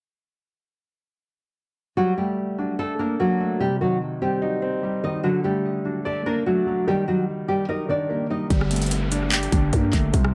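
A brooding, eerie trap hip hop fragment opens on a thumb-plucked nylon-string guitar melody, touched with tape echo, over a mellow, dark concert grand piano, moving through Gmadd9, Cm, D and Eb in an echo-heavy mix with light reverb and digital ambience, before a growling, buzzy 808 bass, a trap kit with a hard-clipped kick and metallic hats, and a downlifter arrive together at 8.5 seconds in a half-time feel.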